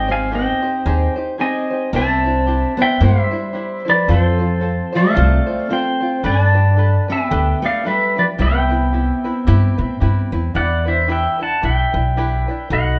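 A woody, up-front pizzicato upright bass and a clean, compressed pedal steel guitar carrying the melody with slide and volume swells open this sunny, dreamy Hawaiian fragment in a gentle swing, joined from the start by a light fingerpicked tenor ukulele and a full-bodied fingerpicked dreadnought acoustic guitar playing a second line until 10.0 s, as the chords drift from Abmaj7 to Em7 in a moderate stone-room reverb that makes the band sound live together.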